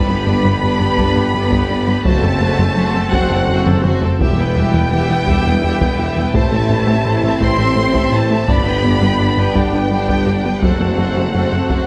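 Drenched in the wet reverb of a scoring stage, this vast, relentless cinematic cue, cut from a longer hybrid orchestral and electronic film score, moves in 6/8. A dark, distant violin section carries the expressive melody over a lush bed of second violins, close violas, roomy French horns and a mellow analog pad, with a low foundation of clear tuba, double basses and cellos, while a punchy, funky analog bass riff and a very quiet, tight sawtooth synth arpeggio drive underneath. Close, dry taiko drums struck with heavy sticks enter at 1.0 s and break into a fill at 3.7 s as the chords pass through G, F#dim, Em and Am.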